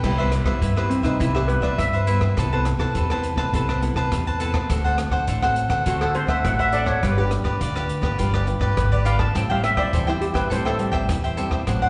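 Sunny and joyful, this samba and choro excerpt puts a bright, shimmering steel pan up front from 0.9 seconds, struck with hard rubber sticks, over a crisp, picked cavaquinho and a woody, fingerpicked classical nylon-string guitar with old strings; all three carry plate reverb and slapback echo. A growly pizzicato upright bass and a dark, smooth jazz kit with boomy kick, hi-hat, rim click and crash cymbal keep a straight feel as the chords move from Cmaj7 through D7 and G7 to Am7. It sounds like a live gig heard through the venue's PA, with recital hall reverb and a softened top end.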